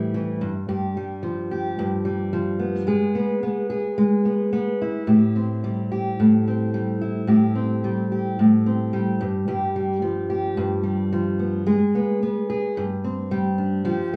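A dark, up-front fingerpicked steel-string acoustic guitar plays alone from 0.0 to 14.2 seconds in this reflective, tender pop piece at 109 BPM in 4/4 with a light sixteenth-note swing, tuned to A4 = 436 Hz, moving through G7(no3), E/G#, Am7, G#m and Gsus4 with audible finger squeaks inside a small room's modest reverb, cut from a longer piece.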